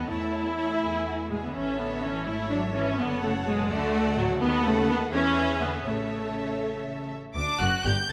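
Spirited and lively, this quick classical-period movement for string orchestra in A major moves in a rubato 6/8 at 83 BPM, with a rich, expressive violin section carrying the melody high above a smooth, distant second violin line, a lush, up-front viola section, a close cello section and a clear, intense double bass section entering at 0.1 seconds, all bowed with vibrato and set in a moderate scoring stage reverb as the harmony travels from A/E through F#m, D and B7/D# back to A before turning to D at 7.4 seconds in this fragment cut from a longer piece.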